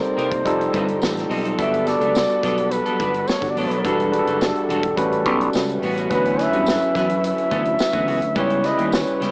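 Slick and urban, this short cut from a longer piece is polished 1980s jazz-funk pop in a straight 4/4 feel. A breathy, whispered flugelhorn carries the melody with a soft attack, scooped notes and an intimate, mellow vibrato. Beneath it, an overdriven tine electric piano sits up front with a barky, gritty tone through a combo amp and analog chorus, while a clean, picked electric guitar plays a chorused riff. A modern studio drum kit with a tight kick and medium-tuned snare drives the groove, joined at 0.2 seconds by a growly, bright fingered electric bass and at 1.0 seconds by a jingly tambourine tucked in the background. A dark, woody string section holds very quiet, distant bowed chords through harmonies such as Gmaj9, Em11, A13 and Dmaj13. The sound has moderate studio reverb and the small-speaker character of a home cassette recording, with tape coloring the flugelhorn, electric piano, guitar and drums.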